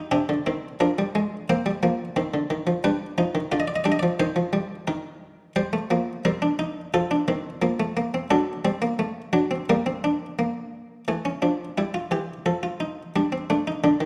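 Classical baroque-style three-part fugue in C minor at 88 BPM, this contemplative yet driving passage cut from a longer piece features a solo buff-stop harpsichord, muted, lute-like and plucked in the Italian manner, sitting up front within a moderate recital hall reverb, with a new section arriving at 11.1 seconds.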